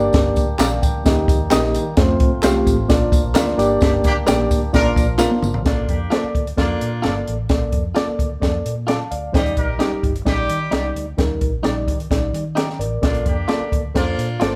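Recorded live in one room with light reverb, this warm, danceable cut from an uptempo 1960s-style soul piece at 130 BPM in Bb major rides on a reedy electric piano with fast tremolo, a round, foam-muted fingered bass and an up-front cocktail drum kit with a high-tuned snare and punchy kick, while a twangy, direct-recorded clean guitar adds stabs, a lightly overdriven tonewheel organ with key click holds chords until 5.6 s alongside tambourine, handclaps and very quiet high-tuned congas, and a distant horn section with light vibrato enters at 3.8 s on a band accent that, capped by a drum fill from 5.2 s, leads into a Bbmaj7 groove at 5.7 s.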